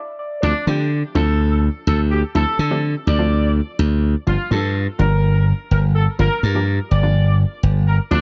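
Bittersweet and energetic, this pop excerpt in D minor moves at 125 BPM in a straight 4/4, opening with a hollow, nasal square pluck with chorus sitting in the background before a drop at 0.4 seconds brings in a mellow, vintage horn section with vibrato and digital delay carrying the melody and a glassy, punchy slap bass up front, over Dm7 shifting to Gm7 in a dark, dry production.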